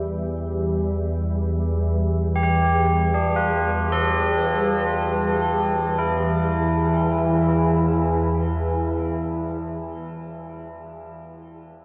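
A huge, wet reverb turns this brief cut from a longer dark ambient drone into a cavernous, ominous space, moving in free time in E phrygian over a Gsus2 chord. A nasal, organ-like drone with slow attack, long release and ensemble chorus sits up front from 0.0 s, holding the low register between E2 and G3. From 2.4 s tubular bells ring out solemn, metallic arpeggios struck with a rawhide hammer, their shimmer reverb and diffuse delay carrying on after the drone stops at 9.9 s.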